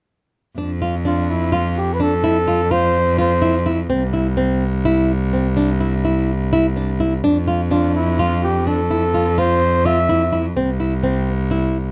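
Hopeful and shimmering, this contemporary chamber piece moves in a straight 7/8 and is cut from a longer work. Fingerpicked classical nylon-string guitar arpeggios and a single bowed cello, rich and smooth with vibrato, sit up front from 0.6 seconds, cycling through F5, Fmaj7 and C. A warm, close-miked flugelhorn carries the solo melody from 1.1 seconds and again from 7.7 seconds, with vibrato and pop-style scooped notes, set in light reverb and a dark production.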